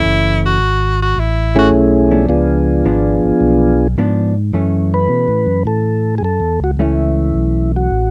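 A swung 4/4 at 107 BPM carries this soulful, bluesy jazz excerpt in F# minor over F#m7 and C#7b9, where a bright, punchy tenor saxophone with vibrato opens the melody until 1.7 seconds, a dark, clean hollow-body electric guitar comps throughout, a fat tonewheel organ holds the bass through a slow rotary speaker, and from 1.6 seconds a soft, flute-like percussive organ with key click takes over the melody through the same slow rotary, all captured in a dry, close 1970s-style studio sound.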